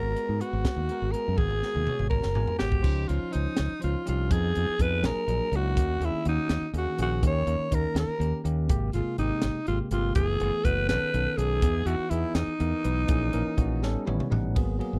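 A growling, raspy alto saxophone carries the melody up front with vibrato and a slapback echo, leading this nocturnal, intense electric jazz fusion excerpt in a straight 6/8 through rich extended chords. A bell-like tine electric piano accompanies and adds fills alongside the drums near 2.8 and 14.6 seconds, while a punchy, bright fingered electric bass and a crisp, polished drum kit with a high-tuned snare drive the groove. The sound is dry and close, like a 1970s studio session.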